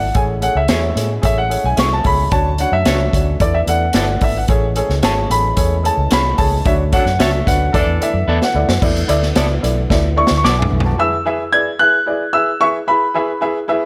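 Joyful, danceable 1960s-style soul at 111 BPM opens with a front-and-center grand piano carrying the melody through tape echo, backed by a woody, slightly detuned upright piano, a dark, round, foam-muted electric bass and a punchy big-band drum kit ringing in a big room. A fat tonewheel organ with a fast rotary speaker holds very quiet sustained chords, while a twangy, slightly broken-up guitar adds spring-reverb stabs in the background. A mellow horn section with light vibrato plays a brief second line at 6.9 s during a band accent, and drum fills mark the later bars before the excerpt arrives on an E chord at 11.0 s.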